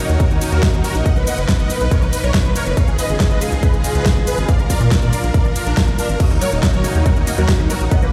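A punchy, overdriven electronic kick sits up front in this bittersweet, emotional uplifting trance passage at 140 BPM in Eb minor, where a huge, bright detuned supersaw melody with chorus and digital delay and a thick, slow-attack unison pad both pump against the beat. Beneath them, a tight, driving sequencer bass plucks through the Ebm7, Bmaj7, Dbadd9 and Bb changes, while an overdriven big-room kit adds a massive snare, metallic hats, crash, ride and shaker, its hats, percussion and cymbals pumping too. At 6.2 s, a squelchy, resonant acid bass arpeggio with 12-bit grit enters in the background, and the whole sounds like a big system playing in a bare room, with a large studio reverb.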